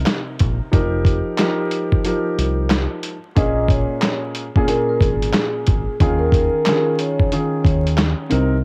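A gritty, overdriven sampler-style drum kit sits up front in this moody, dark boom-bap hip-hop excerpt, with a thumpy kick, medium-tuned snare, hi-hat and handclaps swinging on the sixteenths and carrying cassette grit and small-room character. A dark grand piano with audible action noise plays mellow, filtered accompaniment alongside a round, deep dub fingered electric bass, over chords moving from Cm7 and F9sus4 to Bbm7 and Eb9sus4. After a break from 2.0 to 3.4 seconds, a vibraphone with soft mallets enters on the melody, metallic and ringing with slow motor vibrato, while light digital reverb and vinyl crackle give the whole a home-cassette feel.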